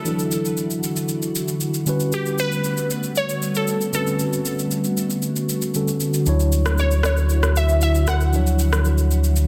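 Amapiano at 116 BPM in a straight 4/4, this relaxed, warm excerpt sits in D major and drifts from Dadd9 to A13/D before settling on Dmaj9 at 6.3 seconds. A crystalline, detuned wavetable pluck carries the melody between G4 and F#5, its bright, fast-attack notes decaying through chorus and tape echo. Beneath it, a mellow tine electric piano plays clean accompaniment through its built-in speakers, while a glassy FM pad holds slow-attack, ethereal chords coloured by ensemble chorus, built-in reverb and phaser. Overdriven electronic shaker and rim click, layered and re-recorded in a large room, enter at 0.1 seconds and sit low in the balance. At 6.3 seconds a deep, full sub bass with an added octave arrives on D2, sustained and up front, giving the final bars real weight in a dense, heavily limited modern master with light reverb.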